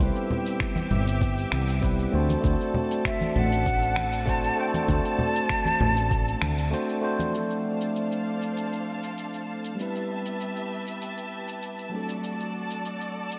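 Sunset chillout at 98 BPM in a relaxed, wistful mood, this excerpt of a longer piece sets a clean tine electric piano with slapback delay over veiled, con sordino strings, while a round, woody fretless bass, a thumpy overdriven electronic kick, gritty shaker and finger snaps, and soft-handed, low-tuned congas carry the groove. A pure, expressive concert flute with vibrato and a touch of 12-bit sampler grit enters at 3.1 s. The bass falls away at 6.7 s, and a twinkling granular shimmer arrives at 7.8 s; the whole mix sits in a lush hall reverb with a big arena sound.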